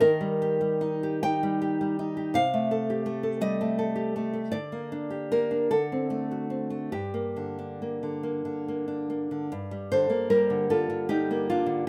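A rough home demo with light reverb and small-room ambience captures a melancholic, intimate romantic piece for solo nylon-string guitar in G minor, its warm, fingerpicked classical tone sitting up front as it moves in a rubato 6/8 at 45-57 BPM, spanning G2 to G5 through Eb, Am7b5/C, Gm/D and D7 before settling on Gm at 6.9 seconds in this short cut from a longer work.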